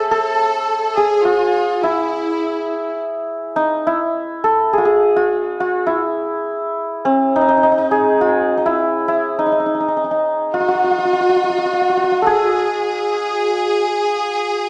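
This Persian modal ensemble piece moves at 103 BPM in a straight 3/4, with a festive, passionate mood. A hammered santur carries the melody throughout, its bright, shimmering strings ringing up front in the mix and reaching up to E5. A studio violin section plays a second line, smooth and even, with light vibrato and a clear bowed ensemble tone. The violins sound at the opening, drop out at 3.0 seconds, and return at 10.5 seconds to join the santur. A moderate scoring-stage reverb and a dark, warm production give the texture depth as this passage, cut from a longer piece, moves into a new section at 3.6 seconds.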